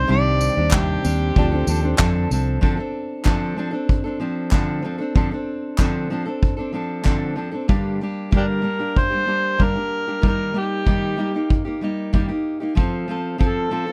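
A gritty, overdriven harmonica opens this wistful acoustic pop excerpt alongside fingerpicked steel-string acoustic guitar, a dark, worn upright piano heard very quietly, and a round, foam-muted electric bass, with piano and bass dropping out at 2.6 seconds. A vintage brush drum kit with a tight kick, handclaps and tambourine carries the straight 4/4 feel, joined by crisp, distant group handclaps until 7.2 seconds, while the guitar keeps playing under light reverb. The amplified harmonica, with light vibrato and tongue slaps, returns at 8.4 seconds over a reflective Gm, Eb and F progression.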